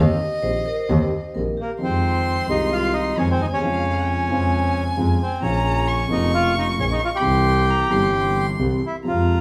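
This tango fragment, cut from a longer piece, carries a tense, melancholic mood with a rubato feel. It opens with a violin solo, bowed with vibrato, portamento and a soft attack, sounding close and expressive. Over the opening moments a vibraphone played with medium hard mallets adds a brief, metallic, ringing figure from 0.4 seconds, its motor off and its tone airy. At 1.6 seconds the bandoneon takes the melody, reedy, dark and up front, carrying on through the next section. Beneath it all, a warm grand piano provides the accompaniment and a bowed double bass with light vibrato anchors the low end with a clear, intense tone. The band plays live in one room, wrapped in the reverb of a stone space.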